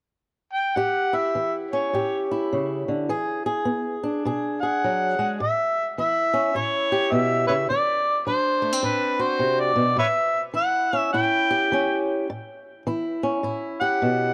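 Acoustic country blues in A mixolydian at 104 BPM with a swung, laid-back feel and a gritty edge, cut from a longer piece. A mellow, vintage-toned harmonica carries the melody up front from 0.5 seconds, jazz-style with light vibrato, tongue slaps and scooped notes, while a boxy, fingerpicked swing-style acoustic guitar enters at 0.8 seconds, its finger squeaks audible as it moves through A7, E7 and D7. The dry, close 1970s-style studio sound is touched by light reverb and small room ambience.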